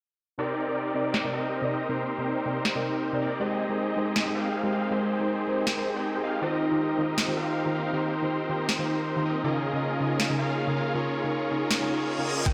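Emotional and lush, this future bass excerpt moves in a half-time feel with a light swing on the sixteenths, cycling through Cm9, Abmaj7, Eb6 and Db69. From 0.4 seconds, huge, bright supersaw chords carry the riff up front through sidechain pumping, a low-pass filter and dub echo, alongside a soft, round pluck accompaniment given analog chorus, the same pumping and echo. A trap drum kit arrives at 1.1 seconds with a sharp snare and bright hats, both filtered and set in studio ambience, and at 1.9 seconds a very quiet, shimmering ambient pad drifts in beneath with ethereal, granular sustained chords. Near the end a reverse cymbal and riser build toward the final moment at 12.5 seconds, where a knocking electronic kick drum lands with a punchy unison pluck note on G5. The whole mix sits in a wet hall reverb and sounds as if played through a big sound system in a bare stone room.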